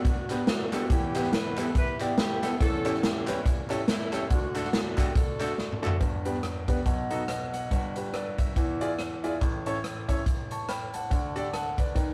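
Jubilant and uplifting, this swinging uptempo gospel excerpt opens with a saxophone section carrying the melody with light vibrato in a jazz style, over a brilliant, up-front grand piano and an airy, polished big-band drum kit with a punchy kick and medium-tuned snare. Crisp group handclaps sit distant in the background until 5.9 seconds, and a drum fill at 5.6 seconds leads into a second section where the saxophones drop out at 6.0 seconds, leaving piano and drums to carry on through shifting chords. The whole has a rough rehearsal-room sound with a moderate small-room reverb.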